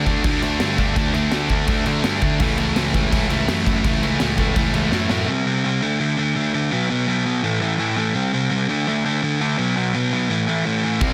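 This urgent, raw punk rock excerpt opens at 0.0 seconds with a crunchy overdriven guitar up front, a tight, bright distorted guitar in the background, and a growly fuzz bass, with a big acoustic rock kit joining a split second later. The tempo is a driving 167 BPM in straight 4/4. The kit has a high-tuned snare, boomy kick and crash cymbal, and a drum fill rounds off the opening section as it moves from D5 to A/C#. From 5.3 seconds the crunchy guitar plays its riff alone, cycling through C5, D5, B5 and A5. The other guitar, bass and drums return briefly at 11.0 seconds, just as the cut ends. The sound is dry, dense and heavily limited.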